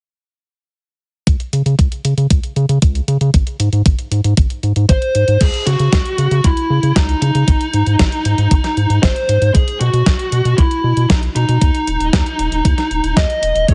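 Italo disco with a bittersweet yet danceable mood, this excerpt from a longer piece moves in a straight four-beat pulse. A thumpy electronic kick and a clean 12-bit drum machine with a fat snare, hi-hat and crash cymbal start at 1.3 seconds, both set in studio reverb, alongside a round analog bass that sits deep, nasal and up front. At 4.9 seconds a smooth overdriven lead guitar enters with a dark, picked tone carried on delay, holding the melody through to the end. The harmony opens on chordless bars, moves to G#, then settles through C# minor, G# and B5 before returning to chordless bars. A lush, vintage string machine playing full ensemble chords appears only at the final moment, 13.7 seconds, colored by phaser and ensemble chorus. The overall sound is dry, heavily compressed and radio-like, with the top end rolled off.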